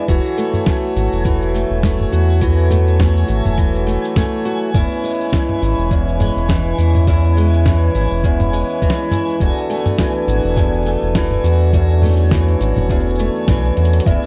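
This dry, close recording has the intimate feel of a 1970s studio, with very little room sound around the players. It is a pastoral, delicate folktronica passage cut from a longer piece, built on a gently swung 4/4 groove as the harmony moves from F#m7 to C#m7 to Bm7 over a steady E in the bass. A bright, up-front steel-string acoustic guitar picks arpeggios through a tape echo, while a reedy, breathing pedal harmonium holds mellow, vintage-toned chords. A round, deep analog bass sits up front with a dark, sustained tone, and a muffled, thumpy electronic kick joins a pitched-down, compressed lo-fi sampler kit of hi-hat, shaker, snare and toms, with a drum fill arriving at 13.8 seconds. High above, a faint granular texture sparkles with an octave-up shimmer and its own reverb, and a sweet, bell-like celesta touches a single note at 14.1 seconds.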